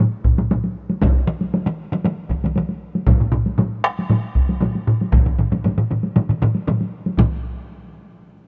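Driving and powerful, this short cut from a longer Japanese traditional taiko piece in straight 4/4 opens with solo taiko drums at 0.0 seconds, struck with hard sticks and sounding compressed and saturated, before taiko ensembles join at 0.2 seconds, one close and dry, and a further ensemble heard in a live room arrives at 1.0 seconds, with every drum placed up front in a mix carrying little reverb.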